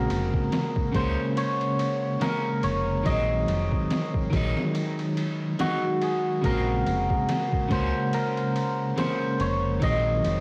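A slow 71 BPM trip hop groove in 4/4 with a swung sixteenth feel sets a melancholic, hypnotic mood in Bb minor, as a pitched-down, muffled sampler-style kit of thumpy kick, ride cymbal and snare, overdriven and compressed, enters at 0.1 s beneath a dark, round fingered electric bass. Up front, a shimmering, ringing cimbalom carries the melody through cassette tape coloring and dub echo, while a bright, twangy electric guitar at the edge of break-up accompanies with harmonic tremolo over chords moving between Bbm9 and Ab7. The dry home cassette sound, dusted with vinyl crackle, frames this brief cut from a longer piece.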